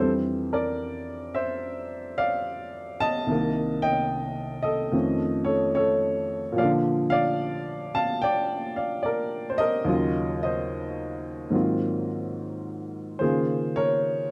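Swinging and warm, this short solo jazz passage moves at 72 BPM in 4/4, with a loose, rubato feel over its lilting eighth notes. A woody upright piano sits up front and carries everything alone for the full 14.3 seconds, ranging from deep bass notes to higher upper lines as the harmony shifts from Fmaj7sus2 through Cm7 and Bb toward Ebm9, Ab13 and a closing Db69. The dry, close 1970s-style studio sound keeps the instrument intimate, touched by only a light reverb, and the passage is cut from a longer piece.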